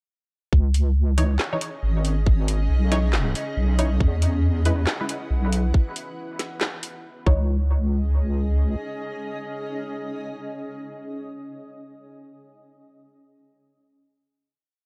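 Dark, lightly reverberant production frames this brooding, meditative deep dubstep piece in C# minor at 138 BPM with a swung half-time feel: a tight electronic kick from 0.5 seconds and a garage kit of woody snare, metallic hats and handclaps from 0.7 seconds drive the drop beneath a deep, wobbling square-and-sine bass with chorus and changing wobble speed, while muted, detuned sawtooth dub chord stabs echo sparsely through cassette-tape colouring, and a cloudy, evolving granular pad drifts in at 1.6 seconds and sustains with the stabs through the final hit to 11.0 seconds.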